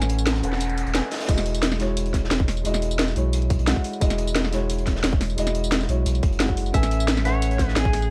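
A deep, round sub bass sits up front throughout this uplifting, lush liquid drum and bass passage in E major at 176 BPM, its sine tone given body by tube saturation. The opening is a short break with a background noise sweep, and at 1.3 seconds a tight, layered electronic kick lands as the chords move from Amaj9 to Emaj9. A produced drum and bass kit with a cracking snare, hi-hat, tambourine and crash cymbal drives the groove up front, while a crunchy breakbeat kit of hi-hat and snare sits in the background, gritty and rolled-off at the top, with high-pass filtering on its hats, snare and room. A felt-muted upright piano carries the accompaniment for the whole cut, soft and intimate, with audible action noise and a touch of delay. A bright, clean, picked electric guitar with phaser and delay carries the melody, returning at 6.7 seconds as the harmony goes back to Amaj9. A small room ambience and a dark, warm production wrap this fragment of a longer piece.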